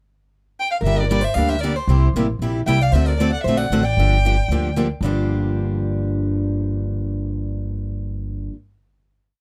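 Jazz manouche acoustic string swing at 230 BPM in G dorian, this short, fiery, virtuosic piece opens with a pickup bar in which a rich, distant bowed violin enters at 0.6 s with an expressive free melody full of vibrato and portamento. It is joined by a picked plugged-in steel-string guitar carrying a harmony line mostly in thirds with audible finger squeak, while a woody pizzicato upright bass up front plays two-beat root and fifth with walk-ups and a bright parlour guitar with fresh strings drives four-to-the-bar rhythm, short and accented on two and four, through Gm, C7, D7 and Gm7 to a final chord from 5.0 s, in a dry, close, detailed recording with a faint mains hum.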